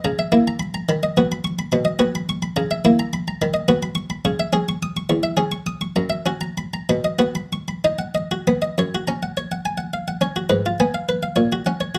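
A baroque-style classical suite movement for solo buff-stop harpsichord, this radiant, dance-like fragment moves in a lilting 6/8 at 62-73 BPM, counted in dotted quarters, with a supple rubato feel. The harpsichord sounds muted and lute-like, its plucked Italian-style tone close-miked and up front, spanning E2 to D#6 under a light touch of reverb. Opening in B major, the phrase settles on an F#7 and B cadence before turning to F# major at 8.8 s, where it continues until the cut at 12.0 s.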